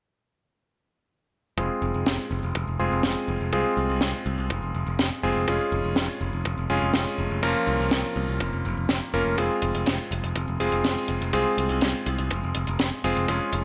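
Italo disco with a nostalgic, melodramatic air, this short passage cut from a longer piece moves in a straight four-beat groove. At 1.6 seconds a vintage electric grand piano enters up front with bright, cutting stabs and clangy low notes, shaded by a low-pass filter and delay. A growly, direct picked electric bass enters alongside it at the front, while a thumpy, sampler-style electronic kick, high-pass filtered and re-recorded in a small room, sits in the background. From 2.1 seconds a tight, dry funk kit adds hi-hat and a high-tuned snare up front. The harmony moves from Fm to Db/F, then Bbm/F and back to Fm, set in a moderate plate reverb with small room ambience.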